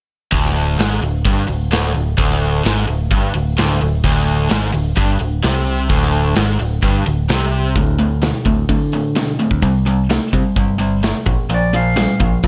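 A straight, driving 4/4 pulse comes from a big acoustic drum kit with a punchy kick and medium-tuned snare up front, while a warm picked electric bass, direct and amped, sits beneath a raw, double-tracked overdriven guitar riff in this brooding classic rock excerpt. At 7.8 s the harmony shifts to a run of D5, C5 and Bb5 power chords. At 11.5 s a dark, clean lap steel slides in with brief volume swells, and the whole mix sits in a light small-room reverb with a dull, rounded top end.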